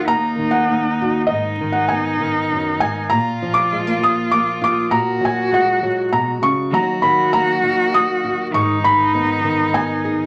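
Under a layer of vinyl crackle and a wet, short studio reverb, this melancholic, reflective acoustic folk excerpt in 3/4 sets a mellow, intimate felt-muted upright piano melody high above a smooth, bowed cello second line with vibrato and a dark, up-front fingerpicked nylon-string guitar accompaniment, while a clean, compressed electric guitar enters in the background at 6.7 s with warm arpeggios shimmering through harmonic tremolo.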